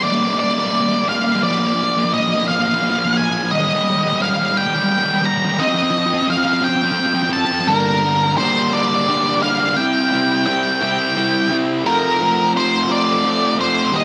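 A slow 6/8 pulse at 58 BPM (dotted quarters) with a straight feel carries this brooding, cinematic rock piece in G minor, cut from a longer work, building through its first 7.7 seconds before the progression moves from Gm through Eb and F5 into a second passage over C and Fsus4. A double-tracked fuzz guitar holds the riff low and up front, with slapback echo, while a dark, distorted octave-fuzz lead guitar carries the melody from Bb4 to Bb5, adding digital delay to its own slapback echo. Both guitars play throughout, set in a lush hall reverb that gives a big arena sound.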